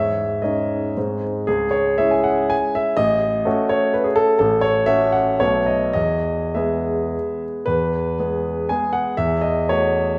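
Nostalgic and wistful, this brief romantic classical excerpt is a triple-time dance for solo concert grand piano, played with rubato and dotted rhythms, its intimate, up-front tone carrying deep bass, long sustain and audible action noise within a wet recital hall reverb, before a new section begins at 7.7 seconds.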